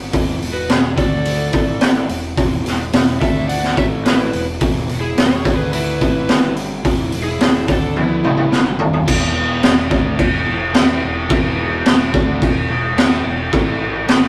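Raunchy and gritty, this fragment of a longer piece is a blues rock power-trio workout with a southern rock streak, moving at a straight 108 BPM in 4/4. A raw garage drum kit sits up front, with a boomy kick, a high-tuned snare, a saturated, rolled-off top, and crashes, hi-hat and toms. Beneath it, a punchy fuzz bass growls with overdrive, while a double-tracked, crunchy guitar riff stays in the background, cycling through E5, D5, A5 and G5 power chords. From 0.5 seconds to 8.8 seconds, an overdriven slide guitar carries the melody, joined by a distorted, bluesy lead guitar playing a quieter second line in the background. A drum fill leads into the second section at 9.1 seconds, and the whole thing has the rough feel of a rehearsal-room take with light reverb.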